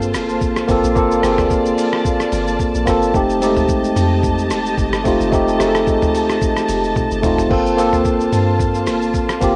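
This home cassette recording carries a light reverb and a gently worn, lo-fi tone across its short span, cut from a longer piece. It is a late-night, deep amapiano groove at 110 BPM in 4/4, in G minor with a 16th-note swing, moving from Gm11 to F9 at 3.1 seconds and back to Gm11 at 7.5 seconds. A warm, clean tine electric piano, heard through a combo amp, sits up front carrying the accompaniment, while a dark, woody symphonic string section holds bowed, lush chords with vibrato from a distant place in the mix, both parts colored by cassette tape. Underneath, a deep FM log drum bass gives round, percussive notes with a fast attack, a dark, decaying tail and a noise layer. The sampler-style drum kit sounds compressed, pitched down and muffled, with a thumpy kick, hi-hat, rim click, shaker, toms and crash cymbal, and it plays a drum fill from 7.0 to 7.5 seconds. A barely audible electronic impact opens the passage at 0.1 seconds.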